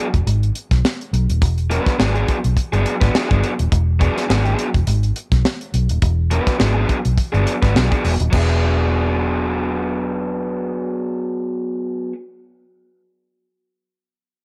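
A dry, close-up funk recording with little reverb, this short cut from a longer piece struts along at 104 BPM in 4/4, with a light swing on the sixteenths and an energetic feel in E mixolydian, resting on an E9 chord. A raw garage guitar carries the accompaniment from the start, its picked, overdriven tone sitting warm and up front between F#3 and B4. Beneath it, a vintage muted fingered electric bass adds a dark, round, punchy low end from D#1 to B1, its foam-muted sound thickened by transformer saturation. A tight funk drum kit with a high-tuned snare, tight kick, hi-hat and crash cymbal sounds airy and polished, and it drops out at 8.5 seconds. The bass and guitar carry on together to the end at 12.1 seconds, through a brief second section that begins at 8.3 seconds.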